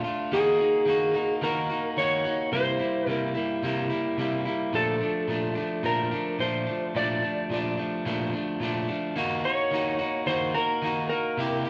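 A light swing on the sixteenths gives this 108 BPM indie pop passage in 4/4 a loose, lilting gait, and the mood is hazy and dreamy. An electric guitar pushed just to the edge of break-up carries the accompaniment from 0.0 s. It is picked and sits up front, with a warbly pitch drift that makes its chords seem to waver. An electric slide guitar enters at 0.3 s with the melody, its fingered, slightly broken-up tone gliding through a narrow upper range. Underneath, the harmony moves from Ebm to C7 and settles on Bbmaj7 before returning to Ebm. The two guitars share a warm, slightly gritty character, and the wet studio reverb suggests a band playing live in one room, in what sounds like a fragment cut from a longer piece.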